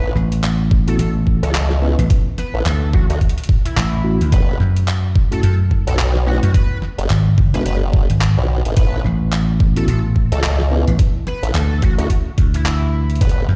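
A big, reverberant sound fills this gritty, playful glitch hop excerpt, as if played through a large system in a bare room with a large studio reverb. The low end is dense: a wobbling formant-sweep bass, chorused and tube-saturated, sits up front beside a punchy, amped vintage slap bass. An overdriven electronic kick knocks hard from 0.7 seconds, while a pitched-down, tape-warm sampler-style kit adds handclaps, hi-hat and a medium-tuned snare with a swung sixteenth-note feel. A mellow, clean tine electric piano plays stabs that pump against the sidechain and trail off in tape echo. Above it all, an edgy, tearing sync lead carries the melody, bright and evolving, with chorus, vibrato and tape echo, over a progression moving from A through D5, F#m7 and G#m7.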